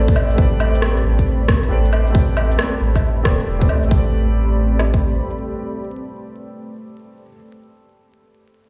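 A muted upright piano, a dark analog pad and a soft dub sub bass open together on an Am11 chord in this wistful, melancholic future garage fragment in A minor, moving at 136 BPM in 4/4 with a 65% swing on the sixteenths. The felt-dampened piano sounds mellow and intimate, coloured by a low-pass filter and tape echo. Beneath it, the detuned sawtooth pad holds moody, full-bodied chords through chorus, while the round, deep sub bass sits up front with tube saturation; both the bass and the piano carry filter sweeps through the first 3.9 seconds. An electronic drum kit with a tight kick and woody snare, along with overdriven shaker, woodblock and rim click, arrives almost at once, while a pumping sidechain breathes through the piano, pad and bass. The shaker, woodblock and rim click drop out at 3.9 seconds, the drum kit at 5.0 seconds, the bass at 5.2 seconds and the pad at 7.3 seconds, and the piano lingers last until 8.7 seconds, all set in a large studio reverb with vinyl crackle and the air of a big sound system in a bare room.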